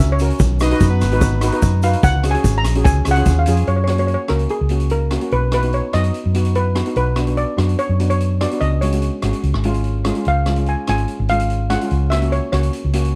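A punchy, round hollow-body electric bass sits up front in this sunny, festive calypso excerpt at 146 BPM in F# major, under two shimmering steel pans (a bright lead melody on hard rubber sticks, an airy accompaniment on medium rubber sticks) that open with a pan solo until 3.7 seconds, a boomy-kicked street-band kit with hi-hat and rim click, a grainy distant egg shaker until 3.6 seconds, and a short burst of loose, octave-doubled horns with light vibrato at 0.6 seconds, all captured in a dry, close 1970s-style studio sound.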